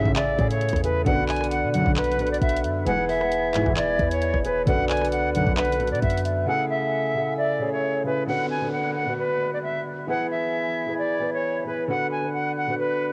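A silver concert flute carries the melody from the first moment of this melancholic, hard-hitting trap excerpt in B dorian at 133 BPM in half-time, its airy, vibrato-laden tone softened by a low-pass filter and tape echo, over up-front, dark baby grand piano with long sustain, a hollow, woody clarinet-like synth lead in the background until 7.8 s, and a small flute group holding pure, tongued chords behind. Round, detuned synth brass stabs, a deep, boomy 808-style bass and an electronic trap kit with a knocking kick, bright hats, handclaps and rim clicks give the opening its punch before the drums drop out at 6.4 s. From 8.3 s a faint downlifter sits beneath the flute and piano, all of it heard dry on a cassette home recording.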